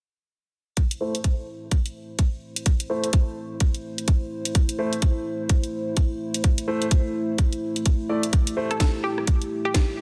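At 0.8 s a gritty, bouncy bass house groove in A minor starts at 127 BPM, with a tight, up-front electronic kick, a garage drum kit of hi-hat, rim click and cracking snare, and a dark analog pad holding sustained chords on Am. The pad is deep, moody and nasal, with a slow attack, long release, lush chorus and sidechain pumping that gives it a breathing pulse beneath the swung 16th-note feel. From 1.0 s a concert grand piano plays stabs, boxy yet rich in low end with long sustain, treated with sidechain pumping, delay and a low-pass filter that sweeps through the passage. At 8.7 s a hollow square-wave pluck takes a short melody, bright and detuned, with chorus, delay, ring modulation and a fast, decaying attack. The mix is dense and heavily limited, set in light digital ambience, and the passage is cut from a longer piece.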